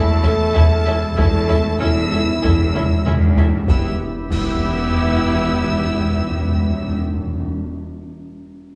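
Cinematic, epic orchestral film score in E minor at 95 BPM, relentless and dark, cut from a longer piece, where a warm violin section carries the melody over sustained mellow French horns and distant woodwinds, a lush viola section and a background woody chamber violin line enter at 0.2 s alongside heavy-stick taiko, focused cellos and very quiet dark double basses hold a low E beneath soft-mallet timpani fills, and a bright-cymbal accent of snare, bass drum and clash cymbals lands at 3.7 s as the harmony settles onto E minor, all in a moderate scoring-stage reverb.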